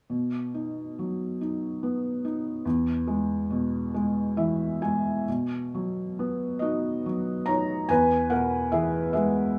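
A felt-muted upright piano plays alone, its soft, mellow tone sitting up front with audible action noise and an intimate closeness, in a tender, lyrical classical excerpt in 6/8 with uneven, rubato beats. Moderate studio reverb surrounds the piano as the harmony moves between B and E, with a brief fill from 3.9 to 5.3 seconds leading into a second section that opens on Badd9 at 5.3 seconds before settling back to E.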